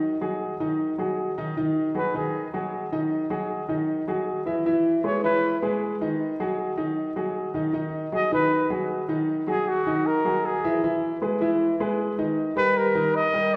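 A breathy, dark trumpet with vibrato and a whispered, intimate tone carries the melody up front in this fiery yet sophisticated jazz fragment, entering in brief phrases at 2.0 and 5.1 seconds before stretching into a longer line from 8.1 seconds, while a warm grand piano with audible action noise and long sustain accompanies throughout, all set in the wet reverb of a recital hall.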